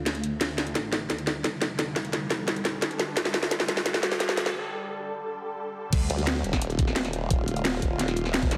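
A straight 4/4 pulse at 174 BPM drives this aggressive, mechanical slice of dark technical drum and bass in D phrygian, opening with a drum fill on an up-front, layered kit of cracking snare, bright hats and crash while a swarming, ring-modulated drone holds sustained Dm chords under a filter sweep and a thick, swirling phased saw bass churns in the background. A very quiet riser and zap enter at 1.9 seconds before a short break. At 5.9 seconds the drop lands with a knocking electronic kick, and at 6.1 seconds a saturated, formant-swept wobble bass with chorus takes over from the phased bass. The mix pairs a lush hall reverb with a heavily compressed, radio-like sound, and this cut from a longer piece ends on a last zap.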